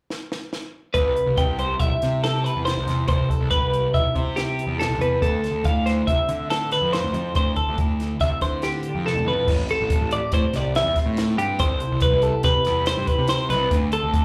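Wistful and bright, this math rock and midwest emo excerpt moves at 141 BPM in 5/4 in C major, opening with a drum fill from a dry, airy compact cocktail kit with a high-tuned snare and punchy kick, before a twangy twelve-string electric guitar plays arpeggios in the background beneath a second clean twelve-string guitar's accompaniment up front, both carrying slapback echo, while an overdriven fuzz picked bass sits forward through Cmaj7 and Dm9; a second fill at 9.1 seconds leads into a new passage at 9.5 seconds over Am9, C6 and Dm7, all heard as a live gig through the venue's PA with club reverb.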